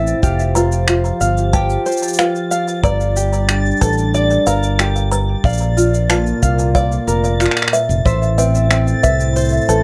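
A light reverb gives this short folktronica cut an airy, intimate sound, with a playful, hopeful mood at a straight 92 BPM in F major. A fingerpicked tenor ukulele carries the arpeggios through delay and plate reverb, while a woody, hollow kalimba adds a second line of short thumb plucks, treated with the same delay and plate reverb. Beneath them, a vintage analog pad holds smooth, warbling sustained chords through chorus, and a reversed, granular texture hovers faintly on a single high note with a dreamy, detuned glow. The fingered electric bass sits direct and up front, and the rhythm comes from a dry, tight acoustic kick alongside an electronic shaker and finger snaps with a tape-warm, small-room character. The harmony moves from Fsus2 to Gmadd9, then Bb at 5.4 seconds and Am at 8.1 seconds, before the kick drops out at 9.2 seconds.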